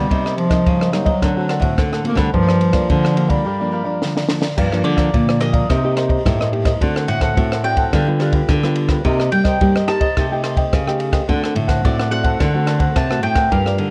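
Yearning and lively, this short cut from a longer samba and choro piece in G minor moves at 107 BPM, with a clear, up-front bass clarinet carrying the melody until 4.3 seconds over crisp picked cavaquinho, two fingerpicked nylon-string guitars (one woody with old strings on accompaniment, one on bass with fresh strings) and a dry compact cocktail drum kit with dark cymbals, a high-tuned snare and a punchy kick, before a break and drum fill hand over at 4.6 seconds to a round, mellow mandolin solo on double strings, all heard through light reverb and the warbling pitch drift of worn cassette tape.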